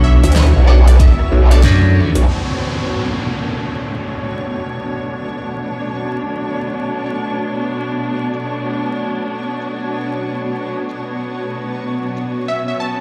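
A swung 94 BPM glitch hop groove in 4/4 opens this playful, swaggering cut from a longer piece in B minor, its pop drum kit bringing a fat snare, bright hats, rim clicks and shaker under filtered tops, with a punchy electronic kick that hits only briefly up front. In the opening moments a glassy slap bass and a growling, wobbling, saturated growl bass carry the low end loudly, while a clean electric guitar adds picked stabs through pumping, filtered tape echo, and a plucky, detuned unison lead states a catchy, vibrato-tinged melody through lush chorus. Beneath them a dark chamber string section holds bowed, expressive chords, pumping under a low-pass filter, and a cloudy, evolving granular pad drifts through its own reverb throughout. At 2.3 seconds most of the band falls away as a downlifter sweeps in and a filter sweep moves over the strings, leaving the strings, pad and drums to carry a sparser stretch. 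The lead returns briefly at 12.5 seconds, all set in a large studio reverb with vinyl crackle, as if played on a big sound system in a bare room.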